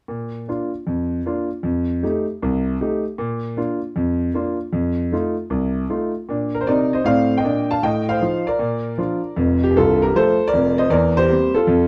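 A dark, intimate studio sound with moderate reverb frames this playful, exuberant stride-piano jazz excerpt, where a solo grand piano, boxy and up front with audible action noise, swings its eighths in 4/4 across a range from C1 to A5.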